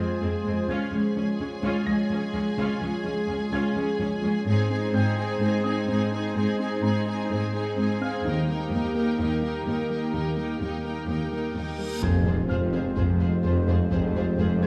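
Opening on a hollow, chorused pad over up-front cello section bass, soft round pluck arpeggios, clear distant violins on a second line, intense violas and a faint tape-echoed grand piano, this tense, relentless hybrid orchestral and electronic film cue in F minor at 127 BPM cycles through Fm, Db, Ab and Eb in a wet scoring-stage reverb until a huge, bright reverse cymbal at 11.7 seconds leads into an impact at 12.0 seconds, where a soft background violin melody, mellow French horns, barely audible trombones, a punchy, funky analog bass riff, very quiet double basses, a vintage-toned tuba and heavy-sticked taiko drums join the texture.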